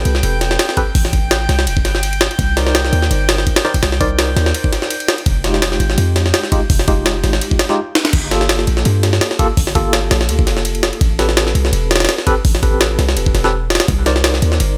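A gritty, compressed, pitched-up jungle drum kit sits up front with a thumpy kick, a high-tuned snare, hi-hat, ride and crash in studio reverb, driving this frenetic, raw drum and bass excerpt at 167 BPM with a light swing. Underneath, a deep, boomy 808-style sine bass decays under stabs from a worn, slightly out-of-tune tine electric piano through a combo amp, carrying medium tremolo and dub echo over minor ninth chords from Am9 through Cm9, Fm9 and Gm9. A glassy, calm harmonics texture of drifting overtones, with chorus and reverb, floats in the background until 8.1 seconds.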